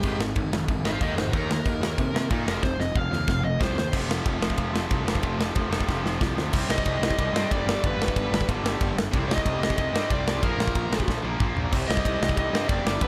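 Aggressive and raw, this short punk rock cut in C minor charges along at 185 BPM in a straight 4/4, with a dark, distorted lead guitar soloing from the start until 3.9 seconds and returning at 6.7 seconds over a bright, double-tracked rhythm guitar riff and a growly fuzz bass. A big, acoustic rock kit sits up front with a punchy kick, medium-tuned snare, bright cymbals and toms, throwing in fills around 2.6 and 11.1 seconds. The mix is dry and in-your-face, with chords moving from Ab and Eb5 into a Cm, G and Bb5 pattern.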